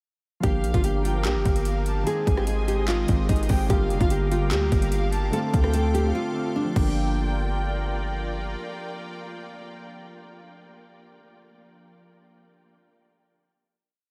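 Hip hop trap in G minor at 147 BPM with a half-time feel, menacing and hard-hitting, built on a fingerpicked, full-bodied nylon-string guitar loop with tape echo, shadowed by a lush, bowed violin section playing a sparse counter-melody in the background over Gm7, Abmaj7 and Dm7 chords. Glassy, detuned digital keys with chorus and a filter sweep repeat rhythmic open-voiced chords, while a bright, resonant sawtooth pad slowly swells in beneath them. An up-front, overdriven trap kit with a hard-clipped kick, metallic hats and fast hi-hat rolls drives the hook alongside a punchy 808 bass whose long sliding sub notes follow the kick, until a break at 6.1 seconds and a final hit from 7.0 seconds, leaving the keys ringing to 12.8 seconds.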